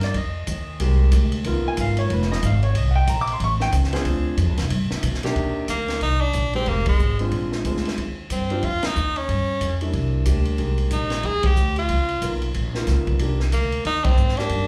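A grand piano with slapback echo and long sustain, a woody, up-front pizzicato upright bass, and a compact cocktail drum kit with a high-tuned snare and punchy kick open this moody, late-night small-group swing and bop cut in C minor at 184 BPM, swinging through rich extended chords in a club setting heard through the venue's PA. At 5.7 seconds an edgy, forceful tenor saxophone takes the solo up front, its vibrato and scooped notes doubled by a slapback echo. The band hits accents together, such as at 8.8 seconds, before the passage breaks off mid-performance.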